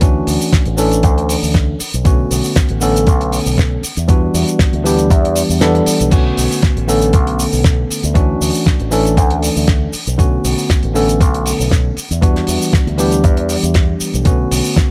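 A thumpy, sampler-style electronic kick drum sits up front with a tape-warm weight, driving this cosmic, sensual nu-disco excerpt at 118 BPM in 4/4 with a light 16th-note swing, dropping out only briefly between 5.6 and 6.1 seconds. Alongside it, a dry, damped 70s drum kit supplies a fat snare, hi-hat, shaker and crash cymbal. A worn, slightly out-of-tune tine electric piano carries the accompaniment up front with a warm, clean, direct tone and a sidechain pumping effect. Underneath, a bright fingered electric bass runs through an envelope filter, sounding direct and amped in its low register until it stops at 14.6 seconds. In B minor and tuned to A4 = 441 Hz, the harmony cycles through Dmaj9, Bm7 and Em9 in a close, nearly reverb-free mix.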